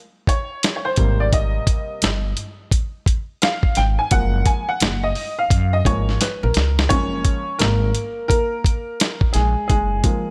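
This short cut from a longer piece sits in a small room with light reverb, its three up-front parts sounding close and intimate. It is relaxed, warm jazz-hop in F# major at 86 BPM, with a swung 16th-note feel in 4/4. A clear, worn upright piano, slightly detuned, open and short on sustain, enters at 0.3 seconds alongside a dusty, sampler-style drum kit. That kit is compressed and gritty, with a thumpy kick, a medium-tuned snare and hi-hat. A growly, dark pizzicato upright bass with steel strings and a woody tone joins at 1.0 seconds as the harmony settles on G#maj9 before moving to F#maj9. The piano carries solo passages throughout, and after a drum fill a new section begins at 6.9 seconds.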